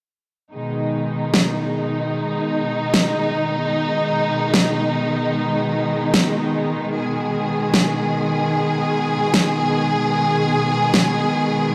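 In free time, this menacing, chaotic heavy wobble dubstep excerpt opens at 0.5 seconds with a bowed studio string section holding sustained chords, its lush vibrato tone passed through a low-pass filter that sweeps across the whole passage. A huge, layered electronic snare enters at 1.3 seconds, tape-tinged and up front beside the close, smooth strings. A moderate hall reverb with a 2.5-second decay surrounds the sound.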